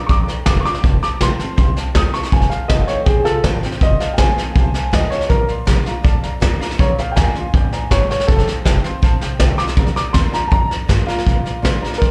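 A straight 4/4 rockabilly groove rolls along, carried by a soft brush drum kit sitting up front with a punchy kick and a medium-tuned snare, and a thumpy, gut-strung upright bass plucked in the background. Over a simple Bb-to-F7 vamp, a dark, mellow upright piano takes the lead with an intimate, vintage tone and audible action noise, backed by a brilliant, polished second upright piano and a picked dreadnought acoustic guitar, all three coated in slapback echo. The retro, rowdy mood comes across like a live club gig heard through the venue's PA, and this short cut is lifted from a longer piece.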